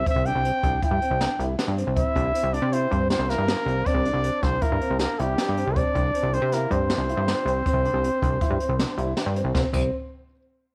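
Driving along in 5/4 at 158 BPM with a straight feel, this intricate progressive instrumental excerpt in C mixolydian sets a breathy, whispered trumpet melody up front over a punchy, funky analog bass with ring-modulated, plucky sawtooth bite, a brushed acoustic drum kit with a high-tuned snare and boomy kick, and boxy concert grand piano arpeggios in the background, while a very quiet, mellow flugelhorn adds a second line from 2.0 s, all in light small-room reverb before the harmony drops away at 9.5 s.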